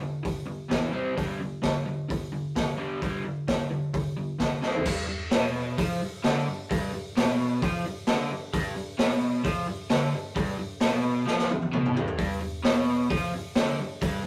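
A crunchy, bright overdriven electric guitar, double-tracked and picked, opens with a swaggering riff in G mixolydian at 131 BPM, joined at 0.2 s by a raw garage drum kit with a boomy kick, a gritty, rolled-off top and drum fills at 4.6 and 11.3 seconds, all captured as a rough rehearsal-room recording with light reverb and warm saturation in this short garage rock cut from a longer piece.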